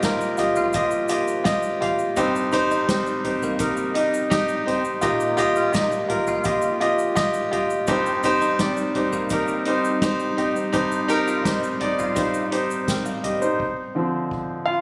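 A clear concert grand piano leads this driving, earnest piano-driven pop fragment, sitting up front with deep bass and a polished, short-sustained tone as it carries the accompaniment in C minor at 84 BPM in a straight 4/4. Behind it, a shimmering, retro pulse-width pad holds slow-attack chords that evolve under a detuned, chorused sheen, while a twangy, direct-recorded clean electric guitar picks a compressed riff with an ensemble chorus, both set in the background. A soft-mallet drum kit gives hi-hat, snare, toms and a boomy kick a natural hall sound, and a grainy tube shaker adds close, dry percussion. The harmony alternates between Ebadd9 and Cm, tuned slightly low to A4 = 437 Hz, before shifting to Dm7 at 13.6 seconds, where the piano takes a solo until 14.8 seconds as the drums carry on beneath it until 14.5 seconds. Captured on a phone in the room with light studio reverb and compression, the recording has a studio ambience.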